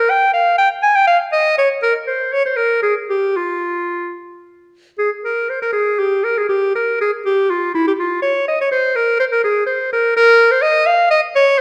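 A bright solo clarinet opens this brief excerpt from a baroque-style fantasia in F minor, its serene, dance-like line unfolding in a lilting 6/8 with free rubato at roughly 71-85 BPM. Played in classical style and placed up front, the clarinet ranges from E4 to Ab5, shifting into a new section at 5.0 seconds before the passage is cut off at 11.6 seconds. A moderate recital-hall reverb lends the sound a sense of distance, as though heard from further back in the room.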